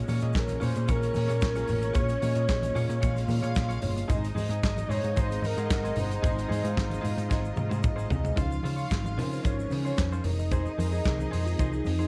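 A dark, sul tasto string line with slapback echo opens alongside mellow tine electric piano and lush, clear sustained strings on Bbm7, before a punchy, round hollow-body bass, a small-room drum kit with handclaps, hard-handed low congas and a grainy shaker join in this driving, sultry disco excerpt at 112 BPM in Bb minor. A flugelhorn with scooped notes and light vibrato carries the melody from 0.4 to 7.9 seconds over a compressed, picked clean guitar tucked in the background. After a drum fill and an electric piano fill, the electric piano takes a solo from 8.4 seconds over Dbmaj7 and Fm7 under light reverb.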